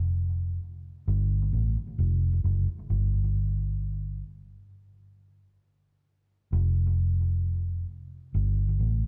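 At a straight, unhurried 66 BPM in 4/4, this hazy, laid-back reggae excerpt in F major features a vintage muted fingered electric bass playing alone between F1 and A1, its dark, round, punchy foam-muted tone sitting up front with tape echo in a light reverb, breaking off from 4.7 to 6.5 seconds before the opening section repeats.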